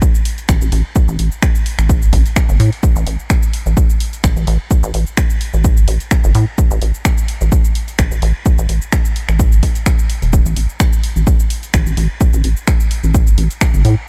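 Minimal techno with a hypnotic, clinical mood, where a punchy, up-front electronic kick drives alongside a house kit of finger snaps, shaker and tape-warm hi-hats, while a rubbery, hollow square bass with tube saturation and sidechain pumping enters at 0.5 seconds, its dark, wave-folded tone plucked through a resonant filter with a moving notch, all in a dry mix with a light swing on the sixteenths.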